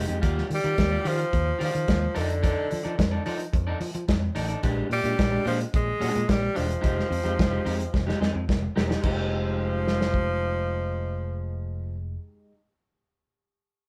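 A clear tenor saxophone carries the melody up front, entering at 0.5 s with a light vibrato and a pop-styled solo voice that stays in a low register. This is a driving, glamorous disco groove at 109 BPM in a straight 4/4, set in F dorian. A soul drum kit sits close and dark, with a punchy kick, a medium-tuned snare, hi-hat, crash and dark cymbals with a rolled-off top, and it plays a fill from 7.9 s leading into a new section at 9.0 s. Underneath, a fingered electric bass gives an amped, warm low end, while a twangy electric guitar at the edge of break-up adds slightly gritty, fingered accompaniment over chords moving from Ebmaj9 to F6, Bb6 and Fm9. The band plays live in one room with moderate studio reverb, and this short excerpt is cut from a longer piece.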